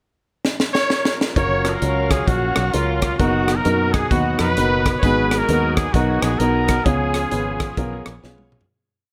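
Light reverb and a small-room ambience frame this jubilant, soulful uptempo gospel piece in F# major at 131 BPM, swung in 4/4, as a tight funk drum kit with a high-tuned snare drives a two-beat praise groove and plays a fill through the pickup bar before the breakdown arrives at 1.4 seconds. A clear trumpet with vibrato carries motif-based call phrases in a pop style, while a smooth jazz horn section sits in the background, and a baby grand piano with long sustain keeps a quarter-note chord rhythm in close voicing. Beneath them, a punchy, foam-muted fingered electric bass walks and runs, and a very quiet, lightly overdriven tonewheel organ holds drop-2 chords with key click, grace notes and a slow rotary speaker, until the piece fades out from 6.9 seconds.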